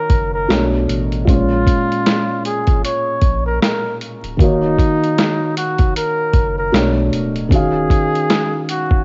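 A swung 77 BPM groove in 4/4 from a muffled, pitched-down sampler-style drum kit, with a thumpy kick, medium-tuned snare and hi-hat recorded in a large room, carries this nostalgic, reflective lo-fi hip hop cut as a jazz-style flugelhorn solo with vibrato and scooped notes drifts over dark, intimate felt-muted upright piano chords (Bm9, Bbm7, Ebm7, Ebm9) full of audible action noise and cassette tape grain, while a round, deep sine sub bass enters at 0.1 seconds, all wrapped in light reverb, vinyl crackle and the dull, homespun haze of a cassette recording.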